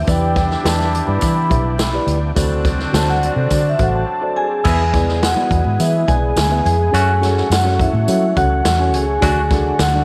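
Uplifting and joyful, this excerpt of uptempo 1960s-style soul at 105 BPM features a mellow, soft-mallet vibraphone melody soloing over Em7 and D7 until a break at 4.1 seconds, backed by a round, up-front muted electric bass, a clean tine electric piano, a gritty overdriven tonewheel organ with chorus vibrato sitting in the background, a smooth saxophone section, a swinging big-band drum kit with a punchy kick, a jingly tambourine and faint congas, before a bright, hard-mallet vibraphone with tape echo joins at 4.4 seconds as the chords move through E, F#m and D, all in a light, small-room ambience.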